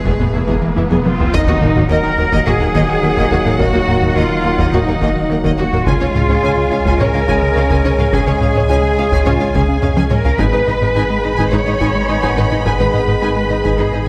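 A straight 4/4 pulse at 106 BPM drives this tense, vast hybrid orchestral and electronic film score in Eb minor, where a solo cello with tape echo sings for only the first second over an electronic riser and impact, while a lush violin section enters just after it and carries the melody above a dark, woody second violin line, gliding violas, a rich cello section, woody double basses, mellow horn and trombone chords, a punchy sine sub bass, a fat, detuned sawtooth analog bass riff and heavy-stick taiko drums with fills near 0.8 and 9.8 seconds, all in a moderate scoring-stage reverb.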